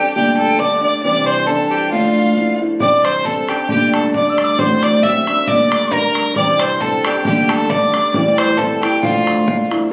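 A lightly swung 2/4 pulse drives this spirited, wild Celtic polka, a short cut from a longer piece. A bowed fiddle carries the melody up front, its tone smooth and even with a light vibrato. Above it, a wooden whistle plays a second line, airy and mellow with a soft, chiffy attack, set back in the room and unsteady. A fingerpicked parlour guitar with fresh steel strings gives dark, boxy accompaniment through chords such as Gmadd9/Bb, Cadd9 and Dmadd9, with a D7 and an Am7 along the way. A boomy, open bodhran joins at 2.8 seconds as the phrase repeats. Captured on a phone in a small room, the sound carries modest room ambience, a club-like reverb and compression.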